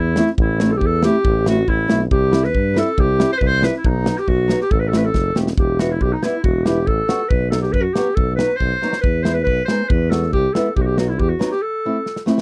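Soulful and festive, this klezmer fragment moves at a brisk 139 BPM in a straight 2/4, set in A dorian sharp4 and cut from a longer piece. A classical-style clarinet carries the melody up front, its tone distant and roomy. Beneath it, a warm pop-style tuba plays the bass line with light vibrato, scooped notes and a smooth top, stopping at 11.3 seconds. A small, dark nylon-string guitar adds fingerpicked accompaniment, and a modern acoustic studio kit drives the beat with a punchy kick and a medium-tuned snare, placing drum fills around 5.1 seconds, at 8.8 seconds and near the close. The harmony moves from Am through C and B, then shifts toward Em, B and E in the second half before returning to Am, all captured in a dry, close 1970s-style studio sound.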